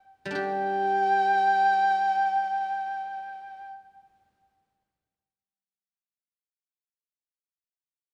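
Pastoral yet festive, this short cut from a longer Chinese traditional piece unfolds in free time, tuned to A4 = 438 Hz, as a silvery, ringing guzheng played with fingerpicks sits low in the mix between G3 and G4 from 0.3 to 6.3 seconds while a single dark, woody bowed erhu carries the melody up front on G5 with vibrato and portamento from 0.4 to 3.7 seconds, all set in a moderate scoring-stage reverb with a 1.8-second decay.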